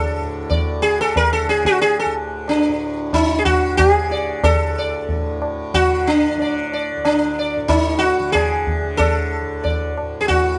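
Hindustani classical music in a meditative, devotional mood, this short excerpt in D major moves at 92 BPM in 7/4, with a bright, buzzing sitar carrying the melody up front over shimmering sympathetic strings, a softly plucked tanpura drone sitting low beneath it, and high-tuned, close and dry tabla entering at 0.5 seconds, all captured with close, detailed microphones and light reverb.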